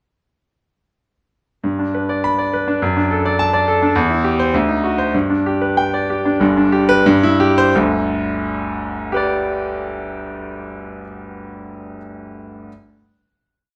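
Heard from further back in a large studio with wet reverb, this complete classical virtuoso piano study in 2/4 features a bright, brilliant concert grand with deep bass, sweeping arpeggios across a span from G1 to B5, and a heroic, sparkling character, moving with rubato and slowing down from 4.5 to 7.7 seconds through a brief coda before settling on a final chord that rings until 10.5 seconds.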